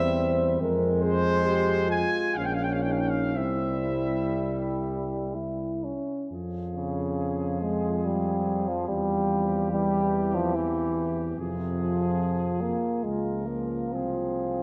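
This is a classical, hymn-like passage for brass band in F minor and 3/4, cut from a longer piece. It moves at a slow, rubato pace of about 58 to 74 BPM with a yearning, elegiac mood. A mellow trumpet section carries the melody with light vibrato, while a dark French horn section sits in the background with a tight second line. A clear euphonium stands up front in the accompaniment, also with light vibrato, joined by a more distant, roomy trombone further back. Underneath, a tuba with a smooth top and light vibrato holds the bass prominently. All five parts play throughout the 14.6 seconds, with a new section beginning at 6.3 seconds, and the concert hall reverb lends the whole band a warm, sombre glow.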